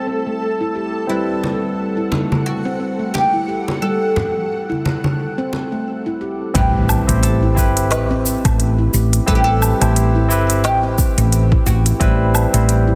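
Dense, heavily limited and lightly reverberant, this organic downtempo excerpt sits in A dorian at 88 BPM in 4/4, with a 16th-note swing and a hypnotic mood resting on an Am7 chord. A growly, round fretless bass with a hollow-body tone sits up front, while a barky tine electric piano and a meditative, nitrided-steel handpan with sharp finger strokes and a low-pass filter both carry tape echo. A cloudy, detuned granular pad with its own reverb pumps against a sidechain until 6.5 seconds. A plectrum-plucked oud with double strings and a woody voice carries the melody through delay from 1.1 seconds, and ringing, hard-handed congas sound from a distant large room in the first half. At 6.6 seconds an overdriven, deep electronic kick and an electronic kit of woody snare, smooth hats, shaker and woodblock arrive, re-recorded in a large room, alongside a very quiet impact.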